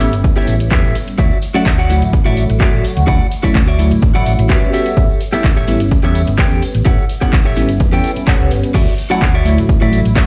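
Filtered disco house at 127 BPM in a straight 4/4, this feel-good, funky clip sits in A mixolydian and moves between A7 and Dmaj9 chords. An up-front, punchy electronic kick enters at 0.2 seconds, while a layered house drum kit with crash cymbal, handclaps, hi-hat and tambourine has a tape-warm character, re-recorded in a small room. A separate tambourine with a maracas and group-handclap flavour sits close but in the background, pumping against the kick. A dark, round hollow-body short-scale bass, fingered and amped with tube saturation, drives the low end and pumps with the sidechain. A detuned sawtooth polysynth comps with a filter pluck, moving notch, chorus and phaser, and a clean, picked, compressed electric guitar plays a riff above it, both breathing with the same pumping. The mix is dry on the instruments yet sounds as if played on a big sound system in a bare room with large studio reverb, and the clip is cut from a longer piece.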